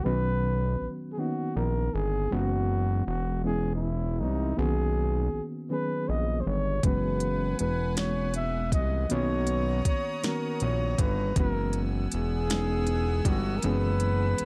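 Sensual and warm, this slow six-eight R&B excerpt moves at 53 BPM in B major, rocking between Bmaj9 and F#9sus4 chords. A breathy, whispered flugelhorn carries the melody up front with a slapback echo, over a reedy electric piano with fast tremolo and a thick, saturated analog bass with a filter pluck. At 6.8 seconds an electronic drum kit with a soft kick, fat snare and smooth hats enters, along with a faint chamber string section of gut-string tone bathed in plate reverb, inside a dark production.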